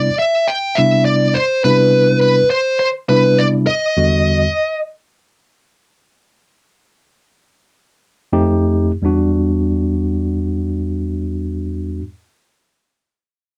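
A bright, smooth overdriven electric guitar takes the lead, picked and placed up front as it carries a soulful, mournful blues melody between B4 and G5. Beneath it, a clean tine electric piano heard through its built-in speakers supplies accompaniment from E2 to G4, also close and forward in the mix. The piece sits in E minor with a 4/4 swing on the sixteenths, tuned to A4 = 442 Hz, and moves between 82 and 103 BPM. The harmony opens on Cmaj7 and shifts to Em7 at 4.0 seconds, where the music slows and then stops, with the guitar falling silent after 4.8 seconds. The electric piano returns alone at 8.3 seconds on F7 before settling back onto Em7 for a short closing section. The sound is a dry, close 1970s-style studio recording with a moderate booth ambience, cut from a longer piece.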